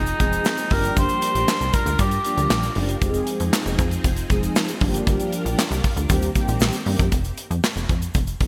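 Bright, polished 1980s-style digital production with a light small-room reverb frames this short, late-night boogie funk cut, moving at 117 BPM in a straight 4/4. A mellow, soft-attacked cor anglais opens with a distant, classical-style solo melody carrying a touch of delay, but it falls away by 2.8 seconds. Underneath, a plucky analog bass with a punchy sawtooth-and-square filter pluck drives the low end, while a lush string machine holds sustained chords in the background and mellow synth brass, round and detuned with chorus, fills in accompaniment over a Fm7 to Gm7 sway that settles on Eb6. The drum kit sits up front with a punchy kick, medium-tuned snare, hi-hat and handclaps wrapped in gated reverb, joined by a grainy, close egg shaker sitting in the background. At 7.1 seconds the strings and brass drop out, leaving bass, drums and shaker to carry a brief chordless passage to the close.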